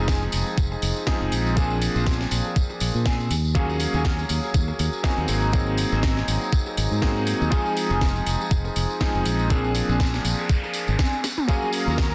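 Groovy and sleek, this 121 BPM nu-disco piece in Eb dorian swings lightly on the 16ths. Up front, a clear, clangy electric grand piano pumps its Fm7, Bb9, Ebm11 and Ab9 chords with analog delay over a round, saturated fingered bass and an overdriven, thumpy electronic kick. A house kit adds a cracking snare and metallic hats, joined by a tambourine, while a dark, mellow guitar riff with chorus and delay sits in the background of the dense, heavily limited mix. A noise sweep at 10.2 seconds and a drum fill at 11.2 seconds lead into a lush, detuned unison pad at 11.5 seconds.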